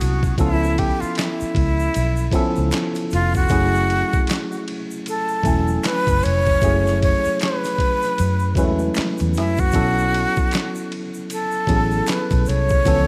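A swung sixteenth-note groove in 4/4 carries this soulful, introspective neo-soul and R&B excerpt, built on a boom bap sampler-style kit of handclaps, kick drum, ride cymbal and snare that sounds compressed, pitched down and gritty, with a thumpy kick, a medium-tuned snare and a tape-warm tone. Underneath, a vintage muted fingered electric bass plays dark, round and amped with a foam-muted character, while an egg shaker, finger snaps and group handclaps sit distant in the background, as if heard from a large room. A tine electric piano carries the accompaniment up front, its worn, slightly out-of-tune sound lightly overdriven as though played through built-in speakers. Leading the melody, a breathy metal jazz flute sings with vibrato, a soft attack, lifted highs and an expressive, warm voice. The harmony moves from C#7alt at 0.4 seconds to F#m9 at 3.5 seconds and settles on B9sus4 at 9.7 seconds, all within light reverb and small room ambience.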